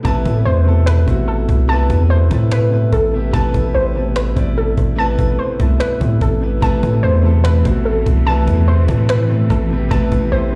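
Heard as if blasted through a big sound system in a bare stone room, this brooding, melancholic trap excerpt at 146 BPM in a half-time feel sits on an Amadd9 chord in A minor, with a deep, up-front sine 808 bass, a dark, boxy concert grand piano, a warbling, detuned lo-fi pluck spinning arpeggios through chorus, phaser and tape echo, and a woody, close cajon struck with hard hands, while a lush bowed string section with vibrato enters in the background at 6.6 seconds.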